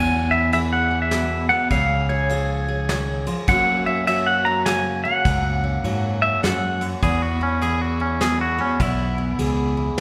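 Honky-tonk and classic country in a swinging 3/4 at 102 BPM, this short passage in E major feels nostalgic and sunny, moving from E through C# and F# before settling back on E at 7.0 seconds. A clean, compressed pedal steel guitar carries the melody up front, its fingerpicked slide tone twangy with volume swells, and it sings until 6.9 seconds. Underneath, a bright, full-bodied dreadnought acoustic guitar with fresh strings is picked throughout, joined by a punchy, amped fingered electric bass. A soft brush drum kit enters at 0.5 seconds with a tight kick, medium-tuned snare and ride cymbal. At 7.0 seconds a bright, clean picked electric guitar steps forward with a twangy second line, all set in the moderate reverb of a concert hall.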